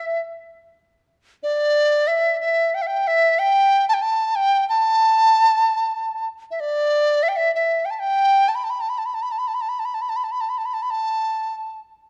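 Free rubato phrasing loosely around 92 BPM in 4/4 carries this pastoral, festive Chinese traditional excerpt in A shang mode, where a solo large dizi, up front and expressive with a bamboo tone, buzzing membrane, crisp attack and vibrato, sings between D5 and B5 until 11.8 seconds inside a moderate recital hall reverb and a dark production.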